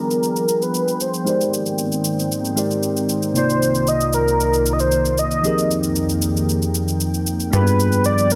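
Lightly reverberant and hypnotic, this late-night amapiano excerpt sets a velvety, up-front synth lead carrying the melody with vibrato and tape echo over a bell-like tine electric piano, an ethereal detuned pad holding sustained chords, and a produced electronic shaker, all under a filter sweep through rich ninth and eleventh harmony, before a punchy, funky analog bass plucks in at 7.5 seconds.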